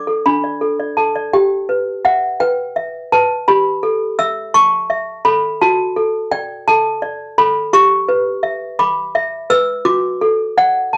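In a gentle, straight 6/8 pulse, a tender and innocent classical lullaby unfolds on solo toy piano, cut from a longer piece. The instrument sounds clanky and bell-like, with plastic hammers and a slightly out-of-tune ring, and it sits up front in a boxy small room with moderate reverb and cassette tape colour. A brief opening gives way at 1.3 s to a longer passage that carries on until 11.0 s, giving the home recording an intimate, nursery-like charm.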